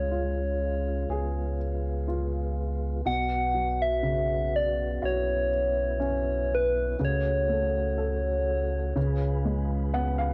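A soft, struck synth lead sits up front, its round, keys-like FM tone warbling with chorus and vibrato as it carries the melody from B4 to F#5 across this short, heartbroken pop excerpt at 61 BPM in 4/4. Beneath it, a dark baby grand piano plays intimate accompaniment with audible action noise and short sustain, closing with a fill from 9.5 to 10.3 seconds. A mellow tonewheel organ holds sustained chords through light overdrive and a fast rotary speaker. A deep sub bass with an added octave, sine-like and full, anchors the low end between B1 and C#2. The harmony moves from C# to Bsus2, then F#m/C# and C#7, and the piano, organ and lead pass through cassette tape for a vintage home-recorded haze with light reverb and a dulled top end.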